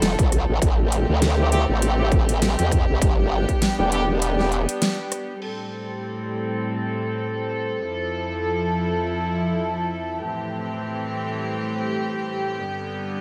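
Glitch hop at 100 BPM in A minor, this swaggering, funky excerpt rides a swung sixteenth-note feel over chords moving from Fmaj7 through Am7 to G. A distorted, up-front electronic kick and a layered dubstep kit with a huge snare, metallic hats, rim clicks and crashes drive the opening, their hats, snare and cymbals low-pass filtered in a small room. Beneath them, a growling, saturated bass with chorus wobbles through its formant filter. Between 1.4 and 4.5 seconds a punchy, roomy horn section adds tight octave-doubled stabs with vibrato, set back in the mix and trailed by digital delay with sidechain pumping. A clear, bowed studio string section holds soft-attack sustained chords throughout, low-pass filtered and pumping, alongside a deep, moody, evolving sawtooth pad with a slow attack, chorus and its own reverb. The bass falls out at 4.7 seconds, and after a band accent at 4.8 seconds and a short break the drums drop away. 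That leaves the floating strings and the dark pad to carry the second section through to 13.2 seconds.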